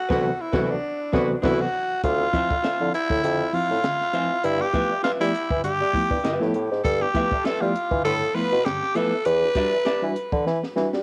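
This home cassette recording has a small-room ambience and light reverb, a brief cut from a longer funky, driving funk piece at 100 BPM with a swung sixteenth-note feel. A growling tenor saxophone leads up front with a raspy, breathy jazz tone, colored by cassette tape and analog delay, as the band hits an accent together in the opening 2.0 seconds. A tight, vintage-sounding horn section adds a punchy second line in two short bursts, while a dark, clean hollow-body electric guitar picks its accompaniment in the background. A worn, reedy electric piano, slightly out of tune and pulsing with fast tremolo, plays stabs through its built-in speakers, and a mellow bassoon with light vibrato carries the bass line in a classical style. The compact cocktail drum kit sounds acoustic and smooth, with a high-tuned snare, tight kick and rolled-off top, adding a fill at 10.5 seconds as the harmony moves from D13 through Dm9 and G13 to Em7.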